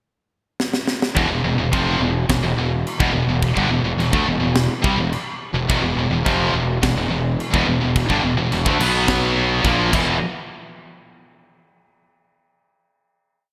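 A tight metal drum kit, up front with a high-tuned snare, tight kick, bright china and crash cymbals and gated reverb, opens this dark, aggressive heavy metal piece at 106 BPM in E minor with a fill at 0.6 s and then settles into a half-time metal groove, as a growly, fingered fuzz bass, also up front, doubles a picked power-chord riff from three background guitars (one high-gain, one scooped, one overdriven and double-tracked) that holds on Em before moving through B5, A#5 and E5 to a final hit at 10.2 s, all set in a lush hall with a bright 1980s-style digital sheen.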